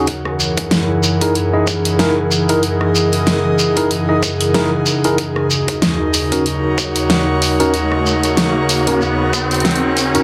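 A dense, heavily limited mix in a wet small room opens on a warbling, nostalgic tape-like pad with chorus and sidechain pumping, an airy, breathy pad above it, and clean tine electric piano stabs with delay, all building up through this funky, gritty glitch hop excerpt at 94 BPM in Eb phrygian, swung on the 16ths, as the chords move from Gb13 to Ebm7 at 5.2 seconds. Up front, an overdriven dubstep kit brings a huge snare, bright hats and rim clicks, while a knocking electronic kick sits in the background and a grainy shekere adds mellow acoustic texture. An electronic riser enters at 6.7 seconds and carries the build-up to the cut.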